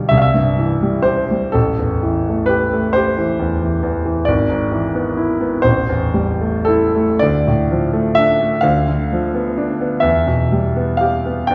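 Tender and nostalgic, this brief 11.5-second passage from a longer romantic nocturne unfolds in a slow, rubato 12/8 at roughly 36-46 BPM, with a solo grand piano of smooth, vintage clarity and short sustain ranging from G#1 to G5, drifting through C, Am7, E7/G#, Dm, Bdim/D and Em as a lush 1.5-second recital hall reverb places the listener further back in the room.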